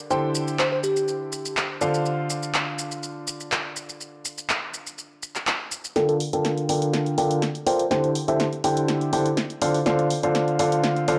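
Bittersweet yet energetic, this piano house passage moves in a straight 4/4 groove, cut from a longer piece. A clear, worn grand piano sits up front playing a short-sustained riff across most of the keyboard's middle range, treated with a low-pass filter and tape echo, while a punchy analog drum machine drives underneath with handclaps, hi-hat, shaker and a punchy snare, dry at the source but set in studio reverb. Farther back, a bell-like FM electric piano adds sparkling melodic fragments with a fast attack and decaying tone, shimmering through chorus and phaser, first briefly near the start and again from 6.0 to 8.5 seconds. At 6.0 seconds the track turns into a build-up, with a drum fill and filter sweeps on both pianos carrying it to the end, as the harmony shifts from Gm9/D through Am7/D to Dm7. The whole recording has a gritty hardware character with a cassette tape feel, placed in a moderate plate reverb.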